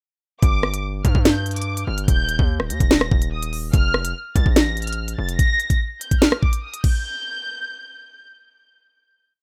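A half-time drill beat at 145 BPM drives this short, ominous hip hop piece. Its up-front electronic kit pairs a knocking kick and sharp snare with crisp, skipping hi-hats, fast hi-hat rolls, rim clicks and crash cymbals. A distorted, saturated 808-style bass sits up front with long sub notes that follow the kick and slide in pitch, dropping out at 5.4 seconds. Meanwhile a lush, low-pass-filtered symphonic violin section loops a bowed, vibrato-rich melody high above over G5, Eb and Fsus4 chords, like a sampled phrase. The drums stop at 6.9 seconds and the violins carry the final hit alone until 8.2 seconds, all in a rough home demo mix with light reverb.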